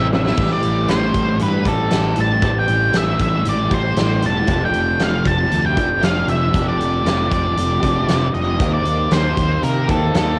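Wistful and blissful, this short cut from a longer shoegaze and dream pop rock piece moves at 117 BPM in a straight 4/4, opening with a brief fill from a huge arena drum kit with a fat snare, punchy kick and bright cymbals while an up-front, dark octave-fuzz lead guitar carries the melody over a compressed, slightly broken-up guitar through a small old amp with reverse reverb, a thick fuzz guitar with subtle chorus sitting in the background, and a growly, overdriven fingered bass, the whole piece captured as a home cassette recording in a modest booth as the chords move from Am7 to F69 to Eb6.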